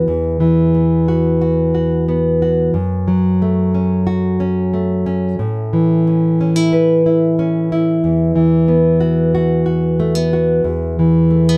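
Set in a straight 4/4 at 91 BPM, this peaceful folk excerpt features a solo fingerpicked nylon-string guitar, up front with fresh strings, a classical touch and audible finger squeak, spanning E2 to B4 through Esus2, F#m and Aadd9 chords before returning to Esus2 at 8.0 seconds, all in light reverb.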